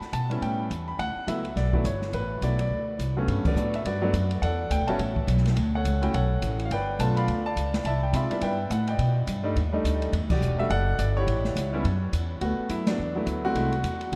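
A clear, polished concert grand piano carries the melody over woody pizzicato upright bass and a dark, smooth jazz kit with a boomy kick and dark cymbals in this sophisticated, playful swinging jazz piano trio excerpt at 210 BPM in D major, its chords moving through rich harmonies like Gmaj9, Em11 and B7alt, with band accents at 3.4, 10.3 and 12.8 seconds, all set in a vast, echoing cathedral reverb.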